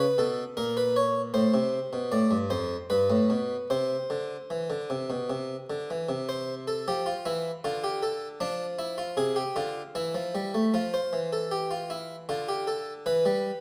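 Close, detailed microphones catch every pluck of a round, French-style harpsichord on a single set of strings, set up front in a moderate recital-hall reverb. This stately, joyful baroque-style two-part invention in C major moves at 77 BPM in a straight 3/4, the solo harpsichord ranging from F2 to D5. Cut from a longer piece, it brings a contrasting passage at 6.1 s before the opening material returns at 10.7 s.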